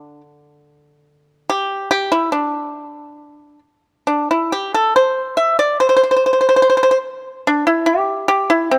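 Chinese traditional music for solo plucked strings, this brief excerpt drawn from a longer piece has a serene, flowing mood, moving in a rubato 2/4 around 71 BPM. A single pipa, played with fingerpicks, carries the whole passage across nearly nine seconds, ranging from D3 to E5 with a dry, percussive attack and a gentle glow in its tone. Close, detailed microphones place the instrument up front, with only light reverb around it.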